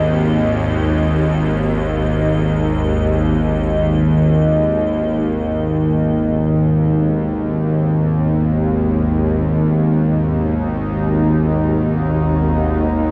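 Ominous and desolate, this dark ambient drone drifts in free time, cut from a longer piece and tuned slightly low to A4 = 439 Hz. Up front for the full 13.1 seconds, a bowed-like drone holds between G#1 and D#2, its string-like sawtooth tone tense and detuned with a breathy noise layer, vibrato and its own reverb. Behind it, an icy glass pad holds a single high D#5 until 5.3 seconds, crystalline and airy with a shimmer of chorus. At 5.2 seconds a sweeping resonant pad takes over in the background, its bright, evolving sawtooth voice spreading sustained G#m7 chords from B2 to F#4 through a filter swell. The whole piece sits in a huge, wet ambient space with a reverb tail of 7.5 seconds, so every sound blurs into a cavernous haze.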